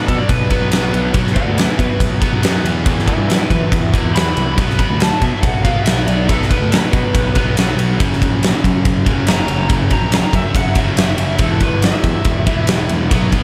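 An overdriven slide guitar carries the melody from the opening moment, its fingered slide tone soaked in slapback echo and ringing through a short solo that stops at 12.7 seconds. This is a heavy, smoky blend of blues rock power trio and southern rock at 140 BPM in a straight 4/4, taken from a longer piece. Beneath it, a bright, double-tracked distorted electric guitar digs into a low picked riff. A fuzz picked electric bass adds a punchy, overdriven growl that mixes a direct signal with the amp. The huge arena drum kit sits up front and loudest, with a fat snare, a punchy kick and ride cymbal in a big room, while the whole trio shares light reverb and small room ambience as the chords move from B5 through Em and F#.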